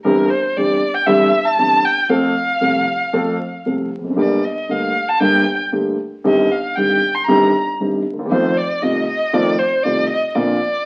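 Passionate and sultry, this brief tango fragment unfolds with a free, rubato feel as a bowed solo violin sings up front with vibrato, portamento and a soft, expressive attack. A dark, mellow grand piano accompanies, its intimate tone carrying audible action noise as the harmony moves from C/G through F, Gm and F7 to settle on Bbadd9 near 10.3 seconds. A wet studio reverb and the crackle of a very old 78 rpm record lend the whole piece a vintage glow.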